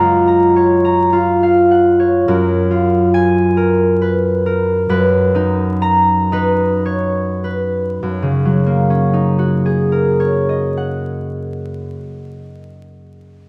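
In a 3/4 with free rubato, the tempo drifts between 49 and 72 BPM and slows from about 1.0 to 8.0 seconds. This graceful, peaceful classical piece is a short passage cut from a longer work for solo concert harp, set in F# major and tuned to A4 = 439 Hz. The fingerpicked harp sounds up front, ringing and warm as it spans F#2 to A#5, and it plays alone throughout its 13 seconds. Lush chords carry the harmony, moving from F#maj7 to F#maj9, then to Bmaj9/F#, and settling on F#69. A wet concert hall reverb surrounds the harp, and a dark, warm production with vinyl crackle gives the recording a softly aged, intimate glow.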